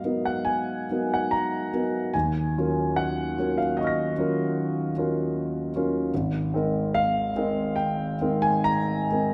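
Impressionist classical solo piano, wistful and nocturnal, moving in an unhurried 5/4 with a loose, rubato feel. A single concert grand carries the whole fragment, reaching from deep bass notes up into the high treble, with long sustain letting each sonority ring on. Its tone is natural and intimate, placed up front, and the sounds of the instrument's action stay audible beneath the notes. A wet recital hall reverb surrounds the playing with a gentle sense of space. The harmony drifts from G#m9 to D#m9 at 2.1 seconds, then settles on Abadd9 at 6.1 seconds, colouring the passage with hazy, extended chords. The recording ends at 9.3 seconds, clearly cut from a longer piece.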